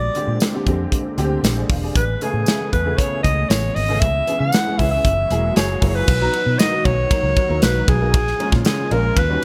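A breathy alto saxophone with light vibrato carries the melody through this glossy, breezy stretch of 1980s jazz-funk pop at 116 BPM in B major, backed by a round, punchy foam-muted electric bass, an up-front modern studio drum kit with a tight kick and gated reverb, an intimate grand piano with audible action noise and ensemble chorus, a very quiet lush detuned pad, and a jingly tambourine in the background, set in bright digital production with small room ambience.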